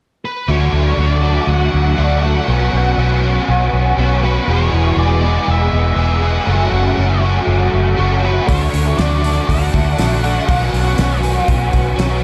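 A dreamy mix soaked in a huge ambient reverb gives this hazy, wistful shoegaze and dream pop excerpt its blurred glow, with lossy compression artefacts faintly smearing the edges. An octave-fuzz lead guitar, picked and distorted with tape echo, carries the melody from 0.3 seconds. A double-tracked, overdriven electric guitar plays the riff up front with an ensemble chorus shimmer. Beside it, a dark, round, foam-muted vintage bass, fingered and amped, holds down the low end in a straight 4/4 feel. The harmony drifts through Dmaj7, Bsus2, E and F#m before returning to Dmaj7 and Bsus2. At 8.5 seconds a loose indie drum kit arrives in a pumping studio room, with a fat snare, punchy kick and hi-hat adding weight until the fragment breaks off.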